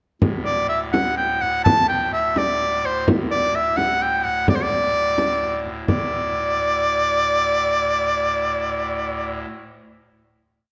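In a 6/8 at 85 dotted-quarter beats per minute with a straight feel, this short, complete medieval dance in D major sounds rustic and festive. A frame drum sits up front, close and dry, struck with hard hands in an evenly spread pattern until it stops at 6.1 seconds. Above it, an edgy shawm carries the folk-style modal melody, ornamented and touched with vibrato, staying present and forward between C5 and A5. Beneath both, a pipe organ on a solo clarinet stop holds a low drone from D2 to A2, its hollow, baroque-voiced tone marked by chiff and tremulant at a soft level. The parts ring in a reverberant recital hall, and the dance settles onto a final chord from 5.9 seconds, with the organ sustaining until 9.5 seconds.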